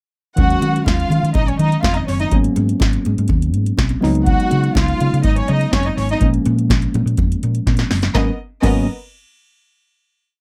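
A dry, close-sounding disco piece in G# dorian at 124 BPM, sultry and danceable, driven by a punchy analog drum machine with a deep kick, metallic sixteenth-note hats and a four-on-the-floor beat, plus a drum fill at 7.7 seconds. A round, dark hollow-body bass plays octave disco lines with slides, while a worn, slightly out-of-tune tine electric piano holds mellow rootless chords with grace notes through D#m11, G#m11, C#9sus4 and A#m7, and a lush bowed violin section adds short, expressive riffs with vibrato. Very quiet, bright, high-tuned congas slap on two with open tones on four, and the piece closes on a final G#m11 chord at 8.2 seconds.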